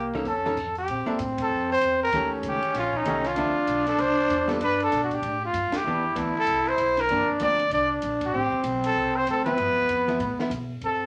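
This clip from a longer piece sits in a wet club reverb, with the trumpet and trombone up front and a compact cocktail drum kit tucked in the background. It's sophisticated small-group swing and bop at 193 BPM in 4/4, with a gentle swing on the eighth notes. A warm trumpet with light vibrato carries the melody, while a growling trombone, raspy and breathy with scooped notes and a soft attack, plays a close-miked second line beneath it. The woody, thumpy pizzicato of the upright bass anchors the harmony, and a dark, clean, compressed hollow-body archtop guitar, picked and amplified, fills in the chords through turns such as Bbmaj7sus2, Eb7#11 and Cmaj9. The drums are dark and smooth, with a high-tuned snare, a punchy kick, and ride, hi-hat and crash. After a brief stop at 0.6 seconds, the band hits accents together at 1.3, 5.7 and 8.2 seconds.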